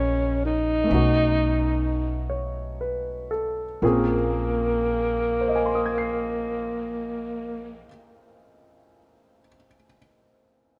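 Breathy tenor saxophone carries the melody up front in this wistful, melancholic jazz ballad in Bb minor, its whispered subtone, scooped notes and vibrato lending a mellow, vintage intimacy within a narrow range. The tempo sits at a slow 38-46 BPM in 4/4 with a gentle swing on the eighths, and the pulse slows over the first 3.8 seconds. A concert grand piano accompanies with a warm, natural tone, deep bass and audible action noise, while a woody, growly upright bass, plucked and close, holds the low end. The harmony moves from Ebm7 to B7 before settling on Bbm9 at 3.8 seconds as the second section begins. Saxophone and bass stop at 7.8 seconds, leaving the piano alone until 10.8 seconds, all set in light reverb in this fragment cut from a longer piece.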